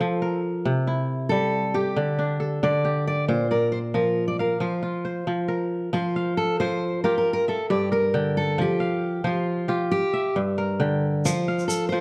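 A dark production in a moderate recital-hall reverb carries this joyful West African string and xylophone music at 90 BPM in a straight 12/8 and F major, where a bright, crisp, ringing kora spins up-front arpeggios from G2 to G5 while a fingerpicked steel-string acoustic guitar with a warm auditorium tone sings the melody beside it, and a grainy, vintage tube shaker slips in briefly at 11.3 seconds.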